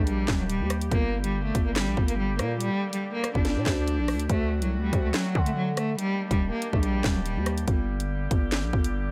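Drill hip hop with a cold, tense mood and a half-time feel, this short excerpt is cut from a longer piece. A single bowed cello carries the melody up front, its tone rich and smooth with vibrato, heard close and filtered through a low-pass filter and delay until it stops at 7.4 seconds. Behind it, a warm woodwind section holds sustained chords with light vibrato, sounding distant and roomy in a classical ensemble style. A growling, buzzy 808-style bass with a fast attack and decaying sine tone sits up front alongside an electronic drum kit of kick, snare, hi-hat, handclaps and rim clicks, where the hard-clipped kick, sharp snare and bright hats carry a tape-tinged, produced edge. The harmony circles through Ebmaj7, Gm and D7, all set in a studio reverb.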